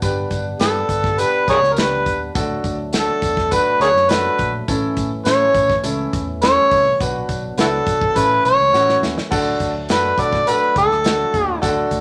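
Joyful and warm, this 12-second excerpt from a longer piece is uptempo 1960s-style soul in D major at 103 BPM, moving through G, D, A and B minor before settling back on D. An overdriven, gritty harmonica carries the melody up front from 0.6 seconds, amplified with a light vibrato, tongue slaps and scooped notes in a jazz style, then takes a solo from 9.3 seconds. Behind it, a bright, woody upright piano plays a brilliant, present accompaniment, while a fat, lightly overdriven tonewheel organ holds sustained chords in the background with percussive second-harmonic attacks. A dark, round, foam-muted electric bass gives a punchy, amped low end. The airy, polished acoustic kit drives with a punchy kick, medium-tuned snare, hi-hat and crash, and its fill from 8.7 to 9.3 seconds ushers in the solo, while a jingly, band-limited vintage tambourine sits quietly behind. A wet studio reverb gives the band a short, lively room sound.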